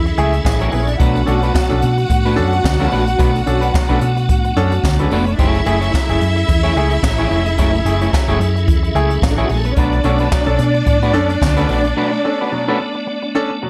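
Dark, lush bowed strings with expressive vibrato, a piping tonewheel organ, lightly overdriven with chorus vibrato, key click and a slow rotary speaker, and a round, up-front hollow-body bass open this glamorous, driving disco excerpt at 109 BPM, swinging gently over F#m9 and Bm7. An airy brush kit with a high-tuned snare, boomy kick and gated reverb joins the bass to push the groove, while a twangy, slightly broken-up electric guitar and a brilliant grand piano with short sustain fill out the accompaniment. Around 12 seconds the bass and drums drop away for a break, leaving strings, organ, guitar and piano in a polished studio room with light reverb.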